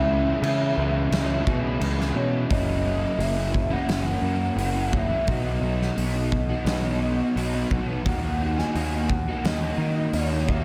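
A fuzzy, punchy picked electric bass sits up front in this blissful, hazy excerpt of shoegaze-tinged dream pop rock, alongside a crunchy, double-tracked overdriven guitar riff with analog chorus. A pure, breathy sine lead with a soft attack, vibrato and analog delay carries a sustained, dark-hued melody, while a huge acoustic arena drum kit enters at 0.4 s with a punchy kick, medium-tuned snare, hi-hat and crash. The whole mix is soaked in plate reverb, moving from C#m7 through F#7 and B to D#m.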